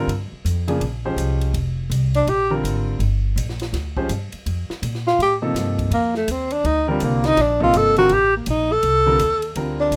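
A light reverb gives this modal jazz excerpt an intimate small-room sound, with the piano, bass and tenor saxophone placed up front and the drums sitting lower. At 165 BPM in 4/4 with a swung eighth-note feel, the mood is intense and searching. A warm, smooth, vintage grand piano provides accompaniment over an acoustic upright bass, plucked on steel strings with a woody tone, while a compact cocktail kit with a high-tuned snare, punchy kick, hi-hat and ride cymbal keeps time. The breathy tenor saxophone takes the solo, first appearing briefly at 2.1 seconds and then returning at 5.1 seconds to play through to the end. Its dark, whispered subtone, soft attacks, scooped notes and vibrato carry a jazz phrasing over a harmony that moves from C9sus4 to F9sus4 at 4.5 seconds.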